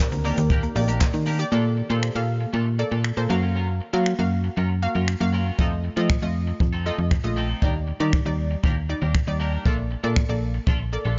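Carefree and summery, this excerpt of dance-pop moves at 118 BPM in Bb major, with a snappy, metallic FM bass and an acoustic brush kit of boomy kick, hi-hat, shaker, finger snaps and handclaps sitting up front, while a round, warbling analog pluck pumps against the sidechain and a twangy, clean electric guitar riff glows with lush chorus. In the first second or so, a velvety synth lead drifts in the background with tape echo alongside a hollow group handclap, soon joined by a woody mallet-like synth pluck playing arpeggios and a glassy, ethereal FM pad, before the rest carries on through chords of Ebmaj7, Bbmaj7, Gbmaj7 and F7. The sound is dry and gritty with a small-room ambience, dulled in the top end.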